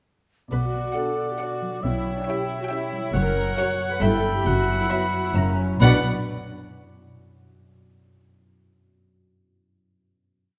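In a straight 3/4 at 136 BPM, this whimsical, sneaky film cue in B minor opens at 0.5 s with fingerpicked, ringing harp arpeggios, a dark, woody cello section and a pure, floating double bass section beneath warm, sul tasto viola lines and sustained woodwind lines from a hollow silver flute, a clear cor anglais and a close-miked clarinet, while a bright triangle sparkles only briefly. From 0.9 s a violin section carries the melody with light vibrato and a smooth top. It is joined by a second violin line in the background and mellow after-beat French horn chords, all in a wet scoring-stage reverb before the cue settles on a final B minor chord at 5.8 s.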